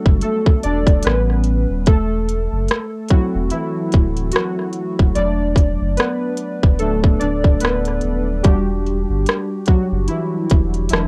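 Nostalgic and hazy, this 73 BPM lo-fi hip hop snippet in E minor features warbling, detuned, dark synth keys with chorus soloing over a thick saturated sub bass and an up-front electronic drum kit of tight kick, crisp hats and rim clicks, swinging gently in 4/4 through chords from A7sus4 to Em7, all wrapped in light reverb and cassette tape colour.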